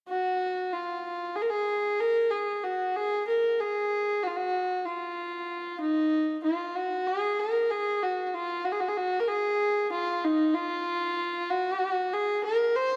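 A lone bowed kamancheh carries this Turkish solo from 0.1 to 13.0 seconds, its earthy, biting tone shaded with light vibrato and gliding portamento, and it sits up front in the mix. Moving in free time, the hypnotic, longing line shifts into a second section at 5.8 seconds. The instrument rings in a moderate concert hall reverb in this short passage cut from a longer piece.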